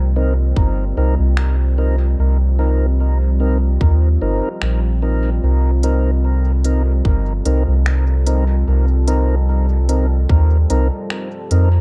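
A round, up-front dub sub bass anchors this hazy, spacious ambient dub excerpt at 74 BPM in C dorian, holding a Cm7 beneath a dark, detuned pad with chorus and reverb, clean tonewheel organ stabs through slow rotary speaker and dub echo, a tight electronic kick entering at 0.6 seconds, and a quiet electronic kit of finger snaps and smooth hi-hats arriving at 1.4 seconds with small-room reverb and dub echo.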